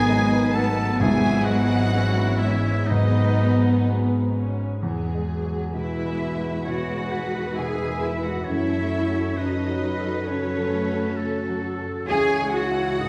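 A rich, expressive violin section carries the melody with vibrato in this bittersweet, sorrowful cinematic film-score excerpt, moving at a rubato 66 BPM in 4/4. A clear solo oboe, a smooth second violin section and a pure, distant flute add second lines, with the flute dropping out at 3.8 s. Beneath them, a dark viola section with portamento and a vintage grand piano accompany, mellow French horns hold chords until 4.5 s, cellos and double basses supply an even bass, and very quiet timpani with hard mallets sound at 1.0 s, all heard from further back in a reverberant recital hall.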